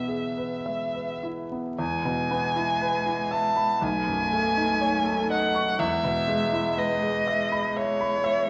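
Classical slow romantic movement for piano trio, a tender and serene fragment in 4/4 with a flexible rubato feel. A rich, focused violin carries the melody up front with vibrato, while a clear grand piano, intimate and polished with audible action noise, supplies the accompaniment; from 0.7 seconds a distant, warm cello adds an expressive second line in the background, bowed with vibrato and portamento. The harmony shifts to a B9 chord at 3.8 seconds and resolves at 5.8 seconds, set in a reverberant recital hall with a layer of vinyl crackle.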